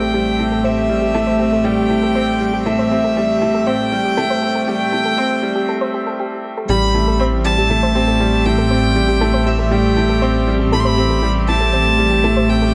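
A straight 4/4 pulse drives this hypnotic, melancholic piano-and-strings electronica, resting on a single Am7 chord as a clear, worn baby grand riff and a deep, rumbling detuned saw bass sit up front beneath a floating, sul tasto solo violin melody. Further back, a nasal, reedy string quartet holds sustained chords in period style while a soft, round pluck traces arpeggios through chorus and tape echo. A build-up with a filter sweep leads to a brief break at 5.7 seconds before the drop lands at 6.7 seconds, with the mix set in a wet recital-hall reverb and small-room ambience.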